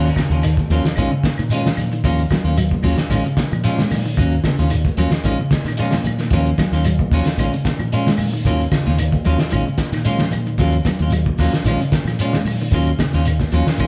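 Afrobeat at 112 BPM in Eb minor, this short cut from a longer piece has a hypnotic, defiant mood, rocking between Ebm9 and Bbm7 with a light 16th-note swing. A cloth-damped, thuddy drum kit sits up front, muffled and gritty with a fat snare, a tight kick, hi-hat and a rolled-off top, while a round, dark fingered electric bass anchors the low end. A twangy, clean electric guitar picks arpeggios in the background, and a hollow-body semi-hollow electric guitar plays picked stabs with spring reverb. Grainy shekere, woody claves and very quiet, high-tuned congas struck with hard hands fill out the percussion, all entering by 0.2 seconds and playing through to 13.9 seconds. The band sounds like it is playing live in one large studio room, with a moderate reverb around it.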